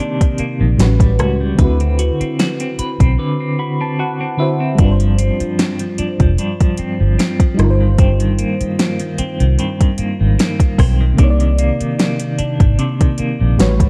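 A lightly swung sixteenth-note groove in 4/4 sets a moody, longing contemporary R&B feel in this short excerpt from a longer piece. The drum kit, electronic and produced with a soft kick, fat snare, metallic hats and overdrive on its sound, comes in at 0.2 seconds. A vintage, foam-muted fingered electric bass follows at 0.4 seconds, dark and round, and sits up front beside the drums. A mellow FM electric piano carries the accompaniment with a soft, full-bodied tone, a fast attack that decays, a noise layer and chorus, and it takes a brief fill during a break from 3.2 to 4.8 seconds. A clean, picked semi-hollow electric guitar plays arpeggios, its hollow-body tone shaded by tremolo and digital delay, over chords that move from Cm9 through A13, D13, G7sus4 and Eb6/G before returning to Cm9. The production is dark and warm, with little reverb.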